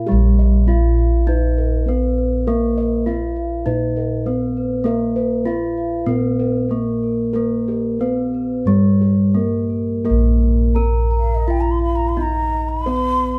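Javanese gamelan in pelog barang on Bb, ceremonial and serene, moving at a moderate 85-100 BPM in a straight 4/4, cut from a longer piece. Up front, a ringing bronze metallophone struck with a wooden mallet carries the melody over round, beating bossed gongs on padded beaters that hold down the bass. Beneath them a softer metallophone on padded disc mallets and a boxy, warm set of bossed gongs spin arpeggios, the gongs dropping out at 9.7 s. Shortly after a new section begins at 10.1 s, an airy bamboo bansuri with unsteady vibrato enters at 11.2 s with a second line, all in a live room with light reverb.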